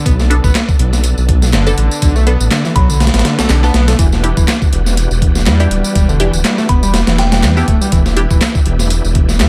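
A dry, gritty breakbeat cut from a longer piece, energetic and swung, moving from Bm7 to Em7 at 4.0 seconds. Up front, a compressed sampler-style break with a thumpy kick and a snare re-recorded in a small room drives alongside a deep, rumbling detuned saw bass, while a screaming, guitar-like overdriven synth lead plays a riff with tube saturation, vibrato and delay, backed by tape-warm electronic tambourine and handclaps. In the background, a shouting tonewheel organ holds sustained chords through a fast rotary speaker and sidechain pumping, a muted, phased dub chord stab plucks with cassette-tape colour and echo, and a glassy, warbling synth bell with AM-radio tone and vintage 12-bit sampler character appears briefly at 2.8 and 6.7 seconds.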